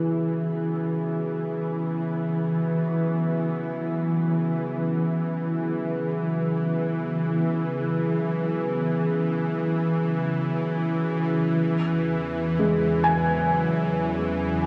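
Ambient music in free time and E major, this peaceful excerpt from a longer piece opens with an evolving, detuned wavetable pad fading in on sustained chords, wrapped in chorus, over a nasal, string-like bowed drone held on E3 with vibrato, all set in a vast, echoing cathedral space; after the harmony shifts to C#m/E at 11.5 seconds, a soft, felt-muted upright piano enters at 12.6 seconds with intimate arpeggios trailed by tape echo.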